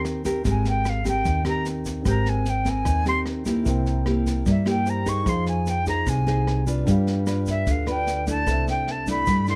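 The recording sounds dry and close, with detailed microphones catching each instrument in an intimate space, in a short excerpt cut from a longer bossa nova piece. At 150 BPM in a straight 4/4 in Ab major, the mood is romantic and breezy as the harmony moves through Abmaj9, C7, Fm7 and G7 before arriving on C69. An airy metal jazz flute carries the melody up front from 0.5 seconds, soloing across the whole passage with vibrato, a crisp chiff and expressive phrasing, though its tone has a distant quality. Fingerpicked nylon-string guitar with a deep classical tone sits forward in the accompaniment, joined by a woody, thumpy pizzicato upright bass and a dark, mellow concert grand piano with long sustain tucked into the background. A vintage brush drum kit with a punchy kick, a medium-tuned snare and rim clicks has a warm, rolled-off top, while a grainy, band-limited tube shaker adds a faint texture behind it.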